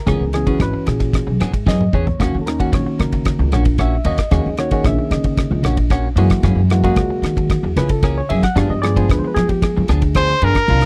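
Electric jazz fusion at 113 BPM with a slick, nocturnal mood, this excerpt from a longer piece sets a barky, reedy electric piano with phaser over woody, thumpy pizzicato upright bass, a damped 1970s drum kit with a fat snare, tight kick and a drum fill at 1.7 seconds, and clean, compressed electric guitar stabs with subtle chorus, moving through C#m7, D#m7, F#9 and G7b9 in a dry, close studio sound, until a brilliant, forceful trumpet with scooped notes and light vibrato enters up front at 10.2 seconds.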